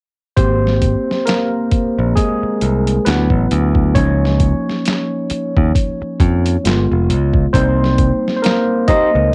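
Warm and smooth, this short excerpt of slow neo-soul R&B moves at 67 BPM in Ab major with a swung 16th-note feel, led by a barky tine electric piano soloing up front through a lush chorus and cassette-tape colour over chords from Abmaj7 to G7b9 and Cm7. A bright picked electric bass with tube saturation sits close and direct beneath it, while a gritty, pitched-down boom bap sampler kit brings an overdriven, thumpy kick, a medium-tuned snare, hi-hat and handclaps. Near the end, at 8.4 seconds, a fingerpicked nylon-string guitar slips in quietly with audible finger squeak, all wrapped in moderate room ambience and the hazy character of a home cassette recording.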